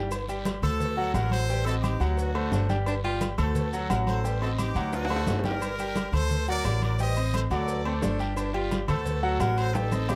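A woody, dark upright bass sits up front in this fiery, danceable salsa excerpt, its pizzicato line anchoring the groove in a straight four. Above it, a punchy, brilliant horn section carries the melody with light vibrato, while a bright grand piano with long sustain and audible action noise fills in the accompaniment. A breathy, whispered baritone saxophone slips in briefly as an intimate second line, first at 2.5 seconds and again near 7.9 seconds. The percussion bed layers thick-skinned, damped congas, ringing metal-shell agogo bells and timbales, a raspy vintage guiro and grainy maracas in the background, plus very quiet, tight cowbell and bongos heard from a distance in a large room, with a drum fill at 4.9 seconds. The harmony circles between D7 and Am7b5 with a touch of Gm, all captured with close, detailed microphones and a light reverb.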